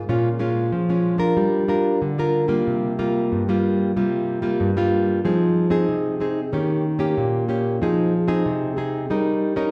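A lone fingerpicked nylon-string guitar opens this short samba fragment, its warm, classical, acoustic tone carrying a nostalgic, bittersweet mood as it moves through Bbm7, Gm7 and C7sus4, finger squeaks audible on the strings. At 5.2 seconds a new section turns toward Fm7 and Eb7. The guitar sits up front, yet a wet recital-hall reverb makes it seem heard from further back in the room.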